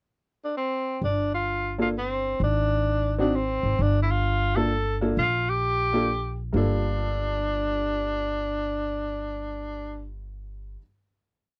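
Smoky and moody, this brief, complete small-group jazz piece swings in 3/4 at 130 BPM in G minor, moving from a pickup bar into a single section before settling on a held final chord at 6.5 seconds. The tenor saxophone carries the melody from 0.4 seconds, its clear, vintage tone touched with vibrato as it spins short, hook-like motifs up front. The pizzicato upright bass enters at 1.0 seconds with a woody two-feel line on steel strings, sitting close in the mix. At 1.8 seconds the upright piano joins with syncopated comping in rootless voicings, its slightly detuned, natural sound giving short-sustained chords a homely edge. The harmony passes from G7 to Ab with a raised eleventh and on to Gm9, all captured in a dry, close studio sound of 1970s character with just a light reverb.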